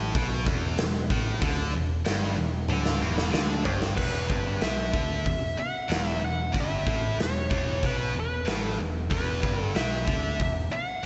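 A swaggering hard rock section opens on a bright, double-tracked high-gain guitar riff with heavy distortion and a growly, overdriven picked bass, as a huge acoustic arena drum kit with a punchy kick and a medium-tuned snare joins almost at once. After a drum fill from 2.7 to 4.0 seconds, a biting, overdriven lead guitar carries the anthemic melody high above the low riff. The big arena sound sits in a lush hall reverb with a softened top end, and the passage is cut from a longer piece.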